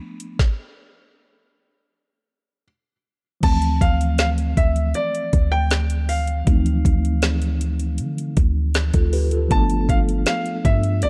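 A baby grand piano with a natural, short-sustained tone carries the melody between D5 and B5 over a mellow, clean tine electric piano voicing a rootless G7, with an electronic R&B kit of knocking kick, woody snare, metallic hats and crash cymbal joining almost at once. This excerpt of a longer piece is sensual, late-night contemporary R&B in D dorian at 79 BPM in straight 4/4. At 3.4 seconds the harmony moves to Dm7 and a deep, boomy 808-style bass enters up front beside the drums. It has a sine body, a noise layer, a fast attack and a decaying tail. The harmony returns to G7 at 9.5 seconds, all in a dark, dry, warm production.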